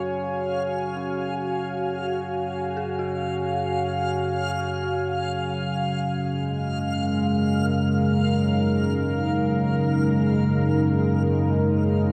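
Dark ambient drone in free time, desolate and unsettling, where a nasal, evolving analog drone fades in beneath a deep, detuned analog pad with chorus and shimmer reverb, a reversed, granular swelling texture glints brightly above, and a very quiet, eerie, inharmonic FM bell traces arpeggios until 10.1 seconds, all within a cavernous cathedral reverb as the chords move from F#5 to G#sus2 at 5.8 seconds in this fragment of a longer piece.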